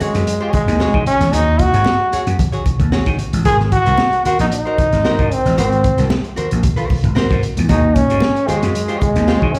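A crunchy, saturated breakbeat kit with a high-tuned snare and punchy kick drives this hypnotic, cool funk excerpt at 113 BPM in Eb dorian, under a growly vintage slap bass, a dark, clean archtop guitar with slapback echo, very quiet ringing congas, and a forceful, bright trombone lead with vibrato and scooped notes, all heard live through a club PA as the chords move from Ebm7 to Ab9 at 3.5 seconds and back at 7.7 seconds.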